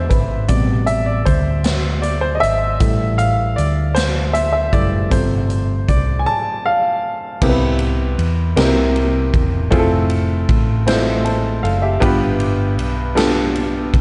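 Bathed in a moderate concert-hall reverb with a big arena sound and a rolled-off top end, this jubilant, uplifting slow gospel excerpt in 6/8 at 52 BPM in C major features an intimate, up-front grand piano with audible action noise and slapback echo carrying a solo through the first 7.4 seconds over chords from E7 and Am9 to Fmaj13 and G9sus4, supported by a round, dark hollow-body short-scale electric bass and a punchy acoustic big-band drum kit with dark cymbals, before moving through Cmaj7, C7, Fmaj7 and G7.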